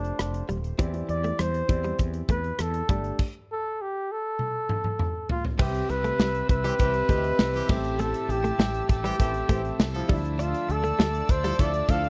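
A straight, steady 4/4 groove drives this romantic, uplifting slice of 1980s-style pop, set in a dry, close studio sound with a 1970s flavour. Up front, a big acoustic rock drum kit with a punchy kick, medium-tuned snare, bright cymbals, hi-hat, rim click, tambourine and toms fills out its roomy space, and a drum fill breaks through a stop before the music opens up at 5.6 seconds. A flugelhorn with slapback echo, scooped notes and light vibrato sings the lead melody over a smooth, vintage grand piano with long sustain and a round, dark fretless bass. Almost from the start, a clean, compressed electric guitar recorded direct picks a riff through analog chorus in the background. At 5.6 seconds, a shimmering, retro pulse-width pad with a slow attack adds sustained chords, and a very quiet, overdriven, double-tracked stack guitar joins the accompaniment. Then at 6.6 seconds, a clear, punchy pop horn section lands stabs behind the solo horn as the harmony moves through Cmaj7, Am7 and Dmadd9.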